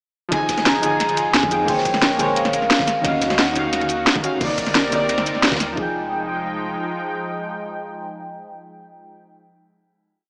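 A short, dreamy and soulful liquid drum and bass piece at 176 BPM in F minor opens at 0.3 seconds with a ringing soft-mallet vibraphone motif carrying dub echo over deep, mellow chord stabs with syncopated pushes and a lush, detuned unison pad with chorus, phaser and sidechain pumping, moving through Fm9, Bbm9, Ebm9 and Cm9. Beneath it, an up-front, overdriven drum and bass kit with cracking snare, bright hats and shaker rolls in two-step fashion alongside a knocking electronic kick, a dark, gritty looped breakbeat and distant hard-hand congas in the background, while a round sine sub bass glides underneath. The drums drop out near 5.8 seconds, and the stabs and pad, joined briefly by the lingering sub bass, hold a final Fm9 chord in a moderate recital hall reverb with a small speaker sound.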